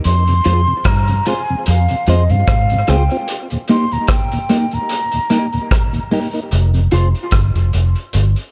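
A vintage drum kit opens this hypnotic, deep dub reggae excerpt at 74 BPM in F minor, its punchy kick, hi-hat and rim click up front in a pumping small room, joined by a round, foam-muted fingered electric bass that sits loudest in a dark, lightly reverberant production, a hollow, airy concert flute with vibrato and dub echo that plays until 5.9 seconds, a mellow tonewheel organ with key click and a slow rotary speaker, and a clean, compressed electric guitar colored by phaser and dub echo, as the harmony moves from Fm to Eb for a break at 3.3 seconds before settling on F5 at 6.5 seconds.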